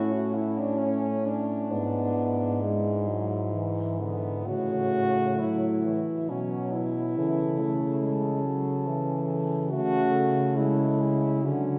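Heard from further back in a wet church with a 2.6-second reverb, this serene classical piece for horn quartet, cut from a longer work, moves in a rubato 3/4 at 61-72 BPM in A major, tuned to A4 = 439 Hz. The smooth-topped French horn melody sits in the background while a warm, present second horn line stands up front, a distant, roomy horn fills the accompaniment, and a mellow bass horn with light vibrato also sits forward. All four play together throughout the 11.8 seconds over a gentle progression from A through E7/G# back to A and on to A/C#.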